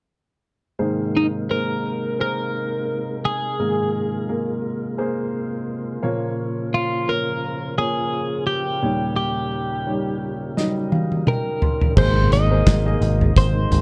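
A woody upright piano and a fat, key-clicking tonewheel organ on a slow rotary speaker in the background open this uplifting, anthemic piano-driven pop excerpt at 86 BPM in Ab major with a light sixteenth-note swing, joined by a clean, compressed twelve-string electric guitar carrying the melody over Abadd9, Bbm and Eb7, before a loose, up-front indie drum kit in a pumping small room bursts in with a fill at 10.6 seconds, and a growly picked electric bass arrives at 12.0 seconds with a very quiet electronic impact just after as the Abadd9 returns, all set in light reverb within a dark, warm production.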